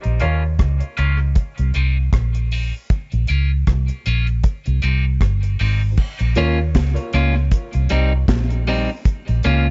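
Spacious and deep, this dub reggae piece pairs a dry, up-front drum kit of kick, snare, rim click, hi-hat and crash with a round, foam-muted electric bass, while a slightly broken-up, compressed electric guitar and a woody, boxy upright piano set in the background both carry tape echo, a filter sweep runs through the first 6.0 seconds, and the piano falls away at 6.6 seconds inside a small, dark room.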